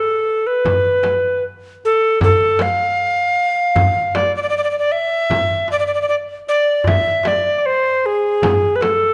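An alto recorder carries the melody up front in this short excerpt of a Turkish makam ensemble piece in D makam nikriz, its airy wooden tone, straight and close-miked, marked by a crisp chiff on each attack. Darbuka and frame drum join within the first second at a moderate 77 BPM in a straight 4/4, the metal-shell darbuka deep and large in the background while the small frame drum sounds bright, compressed and saturated. A moderate recital hall reverb frames the melancholic, soulful mood over its 9.1 seconds.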